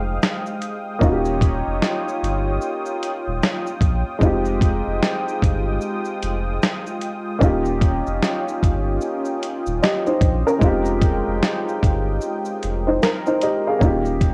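Nostalgic and hazy, this lo-fi hip hop excerpt moves with a relaxed, swung sixteenth-note feel as it alternates between Fm9 and Eb9 chords. An upright piano carries the accompaniment up front, its woody, slightly detuned tone coloured by cassette tape and a low-pass filter, with audible action noise and long sustain giving it an intimate feel. Behind it, a soft-attack sawtooth analog pad holds smooth, bright chords treated with chorus, tremolo and a low-pass filter, ending at 13.8 seconds. A deep, thick sub bass with a saturated triangle tone sits underneath. A gritty, compressed sampler-style drum kit enters at 0.2 seconds with a thumpy kick, a medium-tuned snare, hi-hat and shaker, sounding re-recorded in a large room. Light reverb and worn, warbling old tape with a warbly pitch drift give the recording its dusty character.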